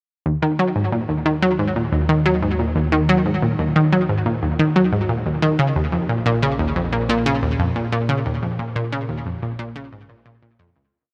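A bright, detuned analog pluck with chorus and tape echo sits up front, repeating a 5-step sequence that drifts against the bar over a fat, saturated analog bass holding sustained roots in the background, in this expansive, cosmic piece of ambient, sequencer-driven space music at 90 BPM in Eb minor, moving from Ebm to Bbm at 5.6 seconds within a huge reverb before fading out from 7.4 seconds.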